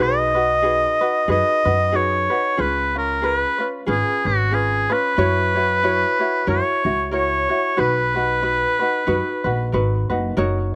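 An open, dry outdoor sound with little reverb frames this short, relaxed and sunny Hawaiian excerpt in B major, moving at 92 BPM in 4/4 with a gentle swing on the eighths. Up front, a clear, close-miked oboe carries the melody in a classical style with light vibrato, while a mellow, fingerpicked ukulele with a slapback echo accompanies it and a woody, growly pizzicato upright bass anchors the low end. The chords pass from B6 through C#7 and F#7sus4 to F#7 before settling on Bmaj7 at 7.8 seconds, and the oboe stops at 9.7 seconds as the ukulele and bass ring on briefly.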